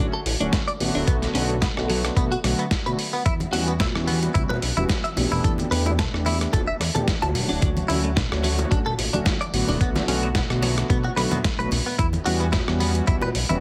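A groovy, sleek nu-disco excerpt at 110 BPM in E dorian opens with dark, detuned synth brass pumping under chorus and delay, a bright, twangy clean electric guitar riff shimmering with lush chorus, and a glossy pulse-width chorused synth bass with tube saturation, before a gritty, overdriven sampler-style kit of hi-hat, rim click and snare enters at 0.3 seconds, a thumpy electronic kick joins at 0.5 seconds, and distant congas and bongos sit in the background from 3.4 seconds, all over swung sixteenths, extended chords moving through Dmaj7, Bm7, Em69 and A9sus4/E, and a heavily compressed radio sound.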